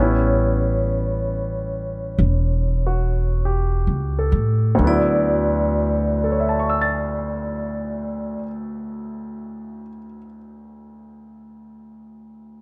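A woody, growly upright bass sits up front in this short cut from a tender, romantic jazz ballad in D major. The bass is plucked on steel strings at a slow 42-57 BPM in a swung 4/4. A polished grand piano supplies the accompaniment, and a vibraphone played with medium mallets carries a narrow melody with a metallic ring and fast motor vibrato. The tempo slows through the opening bars over an A7 chord, then settles onto D69 at 4.8 seconds. The bass and vibraphone stop at 8.4 seconds, leaving the piano alone until 12.6 seconds. The close, detailed recording has little reverb, so each instrument sounds intimate and clear.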